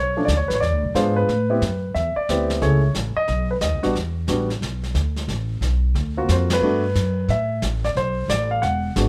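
A grand piano carrying the melody and a pizzicato upright bass open this playful jazz piano trio fragment together, with brushed drums joining at 0.3 seconds. The tempo is a brisk 180 BPM in 4/4, with a swung eighth-note feel. The piano sits up front with a mellow tone, ranging from F3 to F#5, while the bass is woody and growly on steel strings, also placed close and moving between E1 and A2. The vintage kit plays brushes on snare, hi-hat and ride in a small room, its dark cymbals and rolled-off top keeping it a step behind the other two. The harmony moves quickly through chords such as Bm7, E7b9, Amaj7, D7alt and Gmaj9, and the whole band hits an accent at 6.5 seconds before settling on Amadd9. A light reverb gives the trio a gentle, cozy sheen.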